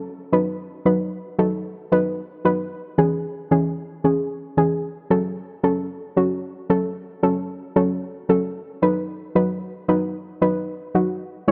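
A soft, round synth pluck with a dark edge, fast attack and short decay plays alone and up front through chorus and delay in this bittersweet yet driving pop fragment at 113 BPM, moving through B, C#m and F#m in a light reverb across its 11.5 seconds.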